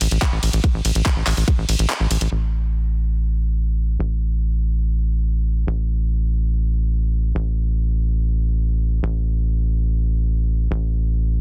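The sound is dense and heavily limited, with a dry, close presence and little room around it. This is a driving, alien stretch of psychedelic trance in a straight four, cut from a longer piece. A tight, punchy sequencer bass sits up front, its sawtooth and square-wave tone shaped into a mellow filter pluck with a fast attack that then decays. For the opening drop, an overdriven electronic kick joins at 0.2 s, layered and produced, while a garage drum kit adds handclaps, hi-hat and ride cymbal, its overdriven hats and cymbals dulled by a low-pass filter. The kit falls away at 2.3 s, and from there the bass carries the groove alone until 11.4 s.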